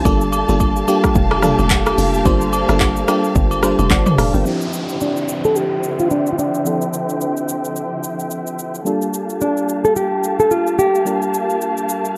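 A glassy FM electric piano with chorus and a low-pass filter opens this deep, late-night amapiano excerpt alongside a bowed string section full of vibrato and portamento, pumping against a sidechain, while a hollow, bouncy log drum bass and small-room agogo bells and woodblock ride a swung deep house kit of deep kick, dark hats, handclaps, rim clicks, shaker and toms. The log drum bass drops out at 4.4 s as a faint electronic downlifter and a filter sweep arrive over a move from Gm9 to Dm11, and at 5.0 s a bright, fingerpicked nylon-string guitar takes the melody up front through a low-pass filter and analog delay. The sound is dry and gritty, touched with light reverb and digital ambience.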